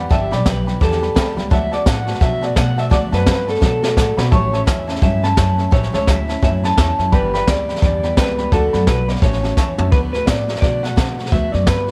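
Rowdy and upbeat, this rockabilly excerpt swings along at 171 BPM in D major, led by a twangy, slightly broken-up electric guitar melody through a small old amp with tape echo, over a bright dreadnought acoustic guitar and a polished upright piano that drops out at 9.9 seconds. A woody, thumpy pizzicato upright bass on gut strings anchors the low end, while an up-front brush kit with a high-tuned snare and boomy kick adds fills at 3.6 and 9.6 seconds, all set in a natural studio room.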